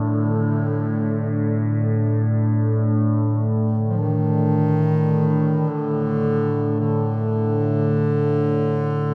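In free time, this cavernous, desolate dark ambient drone excerpt runs for 9.1 seconds over a D5 chord, with a mellow solo bass clarinet playing a classical-style melody between D3 and F3, up front and trailed by tape echo. Alongside it, a detuned sawtooth pad holds sustained chords with slow filter swells and chorus, while an A2 drone of sawtooth and sine tones shifts its resonant overtones through its own chorus and reverb. A bronze singing bowl rings faintly with slow, metallic beating, and a wet cathedral reverb with a 5.2-second decay casts a long tail over the sound.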